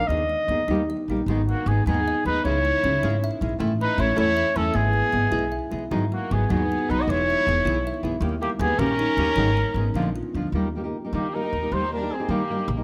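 A mellow, softly attacked trumpet sings a proud, romantic melody up front in this rubato 6/8 mariachi fragment, over dark fingerpicked nylon-string guitar, a woody, thumpy pizzicato upright bass and bright, ringing kalimba arpeggios with slapback echo, while a reedy, gut-toned violin section bows a second line from 1.5 seconds and the kalimba falls away at 10.5 seconds, captured with close, detailed microphones and light reverb.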